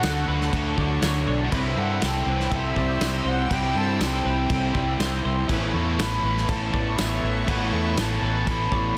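A loose indie drum kit with a tight kick, medium-tuned snare and crash cymbal sets a straight 4/4 pulse alongside a jingly tambourine and a round, punchy, foam-muted electric bass up front, carrying this wistful, hazy shoegaze and dream pop fragment cut from a longer piece through Dmaj7, C and Aadd9. Behind them, a dark fuzz guitar with analog chorus, a bright double-tracked overdriven guitar and a twangy, lo-fi guitar through a small old amp with reverse reverb all play riffs, while a clean twelve-string electric guitar shimmers in arpeggios with chorus and slapback echo, and a detuned, evolving sawtooth pad holds resonant sustained chords. Over the top, a distant, airy concert flute sings an expressive, vibrato-rich melody with slapback echo, all set in a moderate recital hall reverb and a dense, heavily limited master.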